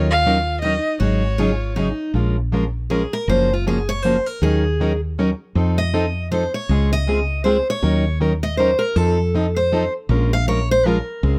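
Virtuosic and bittersweet, this short cut of jazz manouche string swing in 3/4 begins with an expressive, bowed violin melody full of vibrato and portamento that lasts only until 1.7 s, set against a bright, fresh-stringed steel-string acoustic guitar, which plays a second line from the start and then takes a solo from 2.1 s, complete with finger squeak. Throughout, the warm, parlour-toned picking of a plugged-in steel-string acoustic guitar and a dark, round, woody fretless electric bass support them, all captured close and dry in crisp detail.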